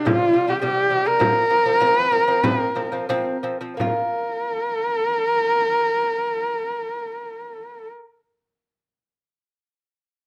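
This short passage of Mongolian folk music opens with a husky, bowed horsehead fiddle and a fingerpicked lute sounding together, joined almost at once by a small frame drum played with soft hands. In a straight 4/4 between 84 and 108 BPM, the mood feels vast and galloping even as the pace slows through the opening phrase. Up front, the single fiddle player carries the melody with vibrato, portamento and a soft, expressive attack, giving a boxy horsehair tone. Beneath it, the delicate lute spins bright arpeggios on doubled gut strings, some of them octave-doubled, over a harmony that moves from C5 to F5 and then to Bb5 as a new section begins at 3.8 s. The drum falls away at 4.1 s, leaving fiddle and lute to carry on until 7.9 s in a dry outdoor setting with little reverb.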